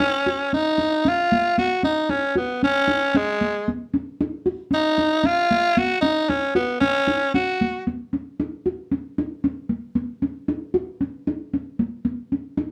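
Joyful and driving, this short afrobeat excerpt moves in a straight four-beat feel, cut from a longer piece. A raspy tenor saxophone carries the melody up front as a solo, its gritty, punchy tone colored with vibrato in a pop style, and it drops out at 7.8 seconds. Alongside it, a handpan, also up front, plays ringing arpeggios with soft fingertips on nitrided steel, sounding mellow and meditative in a boxy small room, and it continues alone to the end at 12.7 seconds. The harmony rests on a suspended chord that shifts to a dominant suspended chord at 1.1 seconds. The band sounds as if playing live together in one room, with a moderate small-room reverb.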